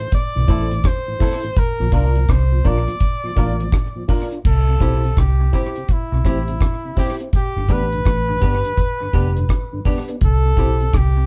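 A light reverb gives this uplifting, sunny roots reggae cut the feel of a band playing live in one room, moving at 83 BPM in 4/4 with a swung sixteenth-note lilt in C major as the chords shift from Am and Bb to C and G. A clear flugelhorn carries the melody with vibrato and scooped notes, while a dry, dark drum kit with a tight kick and a round, punchy, foam-muted fingered bass sit up front, and the bass enters at 0.4 seconds. A twangy, compressed clean electric guitar, a reedy electric piano with fast tremolo stabs, and a lightly overdriven tonewheel organ with chorus vibrato and slow rotary speaker fill in behind.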